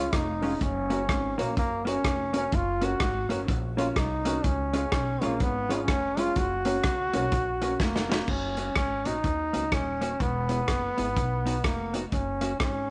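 Ska at 125 BPM with a swung eighth-note feel, joyful and bouncy, in F# major before shifting to F# mixolydian at 8.3 s, in a short cut from a longer piece. A bright, punchy trombone carries the melody up front, its pop-style tone smooth on top with a light vibrato. Behind it, a clean, compressed hollow-body jazz guitar plays fingered accompaniment, while a mellow upright piano with audible action noise adds vintage, intimate stabs until 8.2 s. A woody, thumpy pizzicato upright bass on gut strings holds the low end, and a gritty, saturated breakbeat kit sits up front with a tight kick, medium-tuned snare, rim clicks, hi-hat and dark crash cymbals. A drum fill at 7.8 s leads into the second section, where the chords move through E and B before returning to F#, all of it set in a moderate echo-chamber reverb with a rolled-off top.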